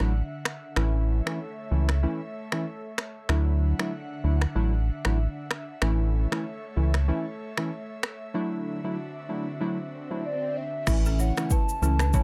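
A dark, close-sounding afrobeats excerpt with a romantic, sunny mood, built on a round, up-front analog bass and an electronic afro-pop kit of deep kick, rim clicks, finger snaps, shaker and crash, with mellow, detuned, chorused keys and an airy, breathy pad holding chords throughout; an electronic swell arrives at 9.3 seconds, a hollow clarinet-like synth lead with vibrato enters at 10.3 seconds, and a woody, buzzing balafon riff played with rubber mallets joins at 11.1 seconds.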